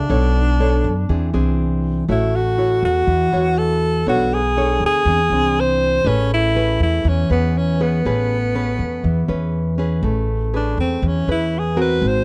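Sunny and romantic, this straight-feel bossa nova places a clear, vibrato-rich alto saxophone melody over fingerpicked nylon-string guitar and woody, thumpy pizzicato upright bass, all close and up front in a dry, detailed sound, cycling through Bm9, Eaug7 and A6 before resolving to Amaj9, with the saxophone taking a jazz-style solo from 10.0 s.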